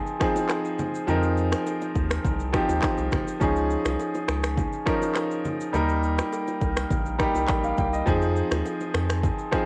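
Afrobeats in F minor at 103 BPM, this mellow, smooth excerpt from a longer piece sets a clear, intimate concert grand piano up front, its chords moving from Fm7 through Dbadd9 and Eb with long sustain and audible action noise. An electronic afro-pop drum kit carrying finger snaps, handclaps, a deep kick, rim click and shaker has a vintage 12-bit sampler grit, while very quiet, ringing bongos and congas sit in a small room. A round, dark analog bass with a nasal edge enters at 1.1 s, and the whole has the light reverb and digital ambience of a home cassette recording.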